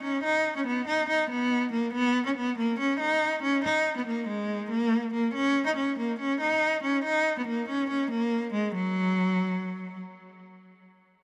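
A hip hop excerpt in Eb minor at 141 BPM in 4/4, felt in half-time, with an ominous, menacing mood. A single bowed cello carries the whole piece as the solo voice, playing from 0.0 to 10.0 seconds in a range from Gb3 to Eb4. Its tone is clear and focused, with vibrato, and it sits close and up front in the sound. Tape echo trails behind the cello, while light reverb and a small room ambience frame it. The piece moves through three sections, with changes at 5.3 and 8.7 seconds, and it is cut from a longer piece.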